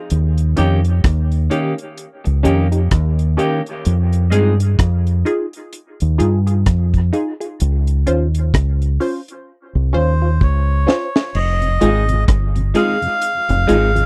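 A dub reggae passage in F minor at a slow 64 BPM opens with a round, dark fingered electric bass, tube-saturated and up front, alongside a dry reggae drum kit with a high-tuned snare, tight kick, rim clicks, hi-hat and crash cymbal. Almost at once a muted, detuned synth chord stab with a filter pluck joins, carrying phaser and dub echo, while a clean, picked semi-hollow guitar with dub echo adds brief accompaniment and returns near the close. The chords move from Eb7 through Fm7 and Dbmaj7 over a swung sixteenth-note feel, and a drum fill at 9.5 seconds leads into the second section. From 10.0 seconds a reedy, breathy melodica carries the melody up front with dub echo, and from 11.6 seconds a mellow tonewheel organ with slow rotary speaker and key click sits in the background. The mood is hypnotic and spacious, captured as a close, 1970s-style studio recording with little reverb and cut from a longer piece.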